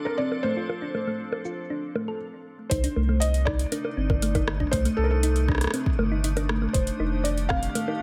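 Over a straight 4/4 pulse of filtered bongos, hi-hat, rim click and shaker from a booming analog drum machine, this cerebral, glitchy IDM excerpt sets a soft felt-muted upright piano melody with 12-bit sampler grit and delay against an icy, crystalline glass pad and a tine-like thumb-piano-style synth pluck whose arpeggios carry tape echo and a filter sweep; after a brief stop from 2.2 seconds, a round sub bass and deep electronic kick arrive at 2.7 seconds as the chords move from Dm7 to Cm69 and F13 beneath light digital ambience.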